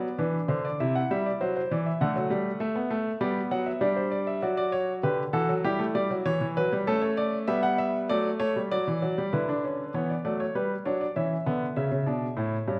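Set in a straight, even 4/4, this short cut from a longer classical piece is a baroque-style fugue in three voices for solo baby grand piano. The mood is stately and elegant, with the single piano carrying every line across a range from G2 to F#5. Its tone is warm and natural, with a long sustain, and it sits up front in the mix. The harmony moves through G, Cadd9, D, G, D/F#, Em, A and D/F#. At 9.3 seconds a new section begins, passing through D, G and A before the cut ends at 12.8 seconds. A wet recital hall reverb with a 1.3-second decay surrounds the instrument.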